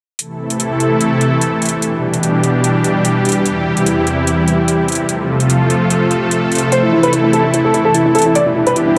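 Heavy wobble dubstep in A minor at 147 BPM with a half-time, lightly swung feel, this menacing, aggressive fragment of a longer piece opens at 0.2 seconds with a lush, detuned supersaw pad holding sustained chords through Am, Em7, C/E and F, roughened by vintage 12-bit sampler grit, over layered, metallic electronic hi-hats. At 6.7 seconds a warm grand piano enters up front with a melody in dub echo, carrying through to 8.9 seconds. The production is dark and set in a moderate, lush hall reverb.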